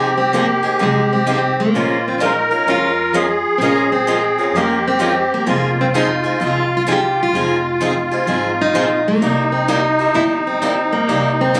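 A reedy, shimmering musette accordion sits up front with a vintage, band-limited tone, carrying a second line beside the parlour-toned lead of a picked, plugged-in steel-string guitar in this fiery, swinging jazz manouche excerpt in F minor at 128 BPM. Beneath them, a bright, boxy swing-style guitar with audible finger squeak and a softer concert-style steel-string guitar in the background supply accompaniment, while a woody, thumpy upright bass on gut strings anchors the pizzicato low end through Fm7, Bbm7 and C7#9 for the full 11.6 seconds. Captured on a phone in the room, the sound carries club reverb and compression.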